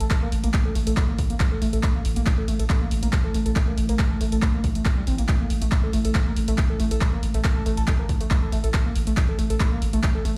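An overdriven, punchy electronic kick sits up front in this intense, driving stretch of peak-time techno, cut from a longer piece and heard as if played on a big sound system in a bare stone room. Beneath it a deep, thick sine sub bass holds on A1 through a low-pass filter, while an analog drum machine adds overdriven handclaps and hi-hats that pump against the kick. A screaming, guitar-like sawtooth lead riffs between G3 and A4 with vibrato, tube saturation and dub echo, and a warm, evolving pulse-width drone with chorus hovers in the background.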